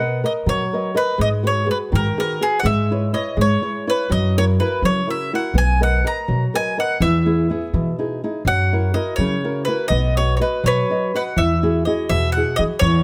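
Close, detailed microphones and light reverb put a bright, picked bowl-back mandolin up front, carrying the melody of this lively, romantic Italian folk serenade in B major, 6/8 at 83 BPM, cut from a longer piece. A fingerpicked flamenco guitar with a warm tone supplies the accompaniment through chords such as Bmaj7, G#m7 and F#7, while a woody, thumpy pizzicato upright bass on gut strings anchors the low end. All three play throughout, shifting at 11.4 seconds into a new section on an Eadd9 chord.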